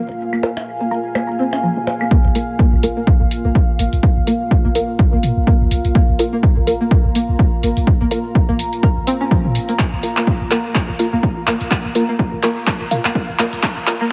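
This minimal techno excerpt sounds close and punchy, set in light reverb and digital ambience, with a hypnotic, quirky mood at 125 BPM in 4/4 and a 57% swing on the sixteenths. From the first second a deep, moody sawtooth pad with a sub octave and a slow attack sits under a punchy sine sub bass with a pitch-drop attack, both breathing with sidechain pumping. A twangy, string-like resonator pluck plays the riff in the background with chorus and delay, while a muted, detuned dub chord stab adds mellow short hits through a phaser, cassette tape and digital delay. Tape-warm claves and percussion blips flicker through digital delay only until 2.1 seconds, when a punchy electronic kick drum arrives up front and an analog drum machine follows with handclaps and hi-hat. From there the track builds to the end, with filter sweeps on the pluck and the stab and a drum fill starting at 9.8 seconds.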